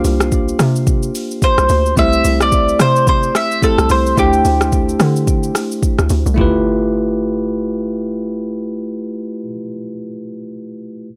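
Swung sixteenths at 109 BPM drive this deep, hypnotic amapiano passage, where an electronic, up-front afro-pop kit of deep kick, metallic hi-hats, rim clicks, shaker and toms sits beside a hollow, bouncy FM log drum bass with a noisy, fast-attack, decaying tone. From 1.4 s a round, picked acoustic mandolin with double strings carries the melody through tape echo over a bright, bell-like tine electric piano moving from C9sus4 to G13. The kit drops out at 6.5 s and the bass at 9.3 s, leaving the clean electric piano alone in a dry, gritty mix.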